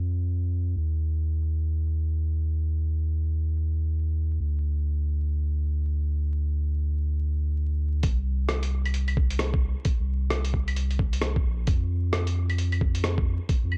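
A muffled, low-passed haze of vinyl crackle hangs over this dry, close-sounding future garage fragment, cut from a longer piece and carrying a ghostly, rainy mood. A deep, round sine sub bass holds the low end from the start, sustained and mellow with a fast attack, pumping under sidechain compression while a filter sweep moves across the first 8.0 seconds. At 8.0 seconds the drums arrive: a compressed, pitched-down electronic kick with a thumpy, up-front weight, and a quieter lo-fi sampler-style kit of claves, hi-hat and rim click, both sounding as if re-recorded in a small room. The 4/4 groove carries a swing on the sixteenths, giving the percussion a shuffling, rain-soaked sway above the bass.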